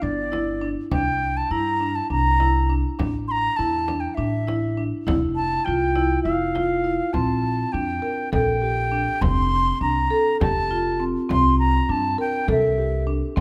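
Driven by a straight 7/8 pulse at 202 BPM counted in eighths, this restless, urgent piece of contemporary chamber music is cut from a longer work. A wooden flute carries the melody between D5 and C6 with an airy, tongued, straight tone, sitting up front beside a warm-sounding marimba played with medium mallets, whose arpeggios fill the middle between C4 and Bb4. Underneath, a pizzicato upright bass on gut strings gives a dark, woody, thumpy foundation from F1 to G2, also placed close to the listener. A deep, large frame drum, struck with hard hands and heard at close range, adds the percussion. Every part plays throughout, and the harmony moves from G5 through C7 and Fsus2 before a new section at 7.1 s brings Bb6, F and C. The whole ensemble sits in a moderate recital hall reverb that lends the music a sense of space.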